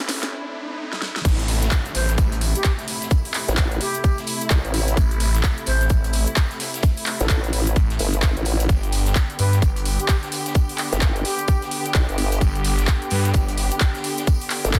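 A dense, heavily limited mix carries this gritty, bouncy bass house cut in A minor at 129 BPM, with swung 16ths. During a short build-up, an overdriven big-room kit with a huge snare and metallic hats and a very quiet acoustic jazz kit with tambourine play while a riser and downlifter sit in the background. The drop lands at 1.2 s with a tight, up-front electronic kick, and a grainy egg shaker joins just after. A swirling, phased, detuned saw bass pumps under the sidechain until 13.7 s, and a wobbling formant-sweep bass with chorus enters at 3.5 s, while veiled, con sordino strings hold sustained chords and a hollow, distant concert flute carries the melody through tape echo over Am moving to G.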